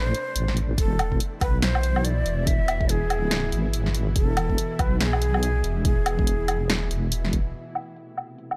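Deep dubstep at 142 BPM with a half-time, swung feel, heavy and meditative, cut from a longer piece and moving from A minor to E and back. A breathy, bamboo-toned shakuhachi carries the melody with vibrato and dub echo until 7.1 seconds over a tense, string-like drone with built-in reverb, while an up-front, deep wobbling bass with chorus sits beneath. A punchy, low-passed house kit of hi-hat, snare and woodblock enters at 0.1 seconds and is joined at 0.8 seconds by a deep layered electronic kick, and a filter sweep on the drone marks the closing stretch from 7.5 seconds.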